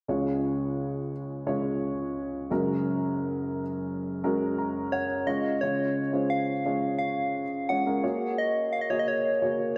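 A dark, slightly detuned upright piano opens this short piano-driven pop fragment in Db major at 87 BPM, its worn, woody tone carrying audible action noise as it moves between Db and Gbadd9 chords and plays a fill from 4.2 s. At 4.9 s a soft, round FM synth lead enters up front with the melody, its keys-like voice striking fast and then decaying, shimmering with chorus, vibrato and a diffuse ambient delay. A lush hall reverb soaks the whole dreamy mix, giving the hopeful, anthemic mood an intimate glow.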